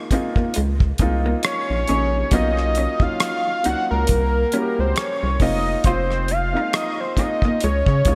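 A bright 1980s-style digital production with light reverb and a small room ambience frames this short, sensual and soulful R&B and neo-soul excerpt, moving at a slow 68 BPM with a swung sixteenth-note feel over chords that begin on Fm7 and pass through Cbmaj9 and C7b9. A warm baby grand piano plays accompaniment from the start, joined at once by a dark, clean, picked hollow-body jazz guitar with subtle chorus sitting in the background, while an up-front, dry and airy 70s drum kit with a tight kick, hi-hat and rim click carries gated reverb. A rubbery, saturated square bass bounces in at 0.6 seconds, and at 1.5 seconds a fat, detuned analog lead with sawtooth and sub-octave tones, vibrato, phaser and delay takes the mellow melody.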